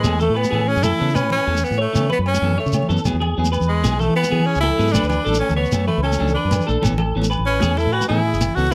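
A rolling 12/8 groove at 127 BPM drives this sunny, danceable highlife guitar band excerpt in A major. A grainy shekere, soft-handed background congas and ringing agogo bells keep it moving under a round, punchy fingered bass as the chords pass from Aadd9 through Eadd9 and D and back. Up front, a bright, vibrato-laden tenor saxophone carries the melody with plate reverb, while one clean electric guitar plays twangy, compressed accompaniment in plate reverb and another picks warm arpeggios through ensemble chorus and tape echo.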